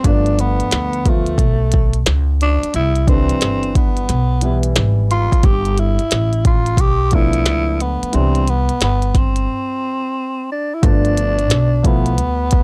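Smooth and warm, this short cut from a longer jazz-hop piece sits at an unhurried 89 BPM in 4/4, with a swung sixteenth-note feel and harmony moving between G9 and Cmaj9 before touching Cmaj7(no3) and returning to G9. A growling tenor saxophone carries the solo melody up front, breathy and raspy in subtone with vibrato, soft attacks and scooped notes, its top kept smooth. Beneath it, a dark, mellow grand piano supplies accompaniment until 12.1 seconds, while a woody, plucked upright bass with steel strings sits low and growly, given extra grit by tube saturation. The glitchy electronic drum kit sits up front in the mix with a deep kick, tiny snare and clicky hats, and a break arrives at 9.5 seconds before a new section begins at 10.8 seconds. The sound is dry and gritty, with little reverb and the worn character of cassette tape.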